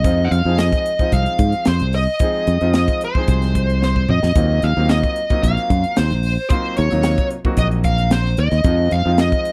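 A straight 4/4 groove at 112 BPM drives this funky electric jazz fusion excerpt, where a crisp, tight-kicked drum kit with a high-tuned snare plays a fill at 3.8 seconds, an up-front fingered electric bass sits direct and bright, a smooth overdriven lead guitar carries the picked melody over Fm7 and Ebm69 chords, and a brilliant concert grand piano with short sustain accompanies in a dry, close small-room sound.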